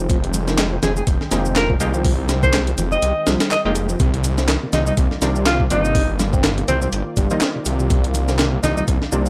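Breakbeat excerpt with a swaggering, funky swing, where a gritty, compressed sampler drum kit with thumpy kick and high-tuned snare drives alongside electronic shaker and handclaps, background congas, and a thick, menacing detuned saw bass, while a breathy, subtone alto saxophone carries the melody through small-speaker grit and tape echo over a lightly overdriven tonewheel organ riff with slow rotary and key click, bold punchy orchestra-hit-like stabs from 1.3 seconds, and a very quiet lush unison pad sustaining Fm11 and Cm11 chords in a dry digital ambience.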